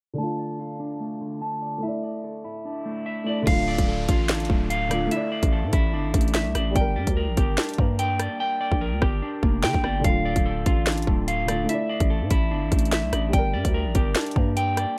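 A half-time 4/4 pulse at 146 BPM drives this menacing, cold drill piece in D minor, where a boxy, felt-muted upright piano and a clean, dark electric guitar playing arpeggios with spring reverb and tape echo open under a filter sweep, before a growling, buzzy 808-style bass, an up-front drill kit (hard-clipped kick, sharp snare, rim click and hi-hats) and a brief electronic downlifter arrive at 3.5 seconds, with the hats dropping out from 8.4 to 10.0 seconds as the close, low-pass-filtered mix cycles through Dm, Asus4 and Gm.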